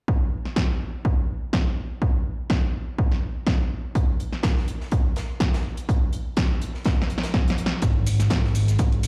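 Piano house at 124 BPM with a soulful, energetic swing, opening on a dry, punchy electronic kick and a layered house kit of cabasa, bright hats and snare, joined at 4.0 seconds by a compact acoustic cocktail kit with a high-tuned snare, before a drum fill at 6.9 seconds gives way at 7.8 seconds to a fat, saturated, detuned analog bass with sidechain pumping, all heard as if played on a big sound system in a bare stone room.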